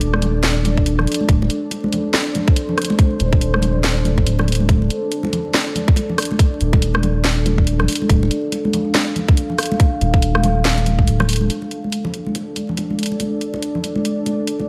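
Deep dubstep with a cavernous, brooding half-time swing, where a dark, detuned sawtooth pad sustains moody chords above a round, soft sub bass that drops out at 11.5 seconds, while an up-front garage kit with cracking snare, hi-hat and rim click plays alongside a tight, layered electronic kick and high-tuned, thick-skinned congas treated with dub echo, all over a bed of vinyl crackle.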